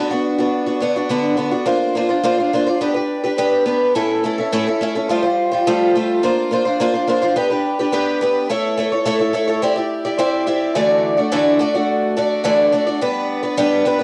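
Hopeful and open-road in spirit, this brief rock excerpt features a lone picked twelve-string acoustic guitar, bright and shimmering with octave-doubled, boxy parlour character, sitting up front in a small room with moderate spring reverb and the soft grain of a cassette home recording as it moves from Bm/D through Bbadd9, G/B and A before settling on Dadd9 at 10.8 seconds and closing on G.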